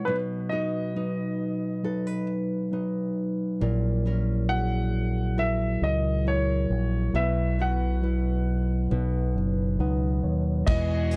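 A dry, close-sounding fragment of an emotional, heartfelt pop ballad: a clear grand piano with audible action noise carries the melody over a mellow tine electric piano, which plays a fill from 9.4 seconds, and fingerpicked nylon-string guitar arpeggios, while a punchy, envelope-filtered fingered electric bass enters at 3.6 seconds, and a lush, distant bowed string section and a modern studio drum kit with a pumping room sound, crash cymbal, hi-hat and kick drum join only at 10.7 seconds.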